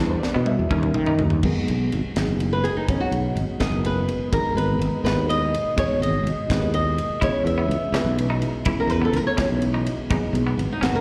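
Heard live through a venue's PA with recital hall reverb, this nocturnal, slick electric jazz fusion excerpt in 6/8 opens on a drum fill from a tight funk kit with a high-tuned snare. Beneath it sit a growly fretless bass up front and a reedy, slightly out-of-tune electric piano with fast tremolo and light overdrive in the background. From 2.5 s a dark, fingerpicked flamenco guitar takes the solo with tape and slapback echo over a very quiet, detuned sawtooth pad holding sustained chords, while a bright, clean semi-hollow electric guitar with lush chorus adds stabs at the start and returns at 7.2 s.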